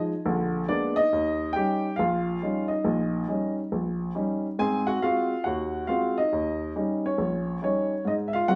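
Sophisticated and relaxed, this short solo jazz passage swings along at 138 BPM in 4/4, with a lilting eighth-note swing in Eb mixolydian. A lone upright piano carries everything, its woody, polished tone sitting up front with long sustain as it ranges from Bb1 up to Ab5. The harmony moves through Bb7b9 at the opening, settles onto Eb7 at 1.1 seconds, shifts to Ab7, and returns to Eb7 before the 8.6-second fragment ends. The instrument sounds present and close, yet a stone room reverb with a one-second decay wraps it in a wet, resonant space, giving the feel of a live performance in a single room. Cut from a longer piece, it offers a brief glimpse of relaxed piano swing.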